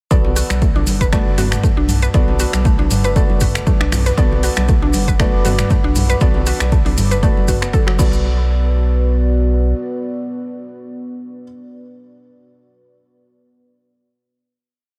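Earthy afro house at 118 BPM in B minor opens straight into the drop at 0.1 s with a punchy, overdriven four-on-the-floor electronic kick, a programmed afro-pop kit of metallic hats, finger snaps, toms and crash, ringing congas and grainy maracas in the background, a round sine sub bass in a dotted rhythm, a woody FM mallet-like pluck cycling a bright 16-step arpeggio with chorus, phaser and analog delay, and soft felt-muted upright piano stabs with audible action noise and delay, joined at 1.0 s by a moody detuned analog pad with chorus and phaser, while sidechain pumping moves the pad, pluck, piano and bass under light reverb until the final hit at 8.2 s, where the piano and pad ring on to close the piece.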